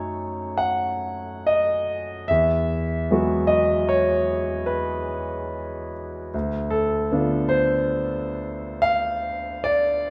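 Bathed in a wet recital-hall reverb, this hazy, wistful fragment of impressionist classical solo piano, cut from a longer piece, places an up-front concert grand with a clear tone, deep bass and long sustain in a rubato 5/4 spanning D2 to F#5, moving from F#m6 to Eadd9 at 2.3 seconds and Dm6 at 6.3 seconds.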